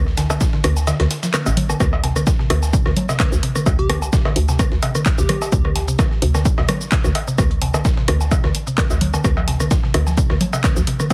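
Hypnotic, quirky minimal techno at 129 BPM in D minor, this short excerpt, cut from a longer piece, rides a hollow, bouncy FM bass with sidechain pumping under a punchy, up-front electronic kick that drops out from 0.9 to 1.8 seconds, a woody mallet-like synth pluck with chorus and tape echo, a house kit of cabasa, handclaps and tape-warm hats, overdriven woodblock, rim click, cowbell and congas with delay, a gritty sampler-style kit of background hi-hat and snare, and a catchy, detuned square-wave unison lead with delay on G4 from 3.8 to 5.8 seconds, all set in light reverb with a heavily compressed radio sound.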